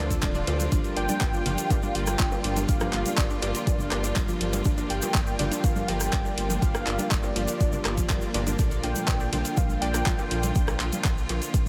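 A straight 4/4 pulse drives this dreamy, emotional progressive house passage, cut from a longer piece, with a deep, tape-warm electronic kick sitting up front and a layered deep house kit of handclaps, hi-hat and rim click beside it, the hats pumping against the sidechain. A grainy, close and dry egg shaker and very quiet, soft-handed congas and bongos add a bright acoustic edge to the groove. Underneath, a round analog bass mixing sawtooth, sine and triangle tones pumps with a dark, evolving low end, while a rich studio string section holds bowed ensemble chords with vibrato in the background. A glossy, retro chorused polysynth supplies pumping stabs with filter sweeps and delay, and a lush, detuned unison pluck weaves arpeggios through the back of the mix. On top, a velvety, smooth synth lead carries the melody with chorus, delay and vibrato over a Dm7 to Gm7 progression that turns to Bbmaj7 at 8.6 seconds, all bathed in light reverb.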